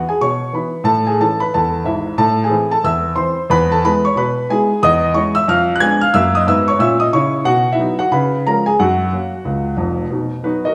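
Stride jazz at a brisk 182 BPM with a swung feel, this playful, exuberant excerpt features a solo baby grand piano, clear yet worn and open, set up front in a reverberant stone room, ranging from deep bass to high treble as its chords move from E major toward B major across roughly 10.7 seconds.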